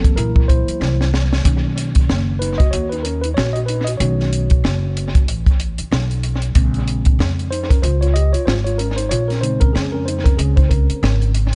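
A swung sixteenth-note groove from a compact cocktail drum kit, dry and up front with a punchy kick, high-tuned snare and hi-hat roughened by vintage 12-bit sampler grit and dub echo, drives this smoky hip hop and jazz-hop passage cut from a longer piece, with a brief drum fill at 0.8 seconds, a woody pizzicato upright bass on steel strings sitting low and up front, and a clean, mellow tine electric piano soloing through its built-in speakers over chords moving from C7#11 to Bmaj7, B9 and Bbm7, all in an echo-heavy mix with little reverb and a rolled-off top.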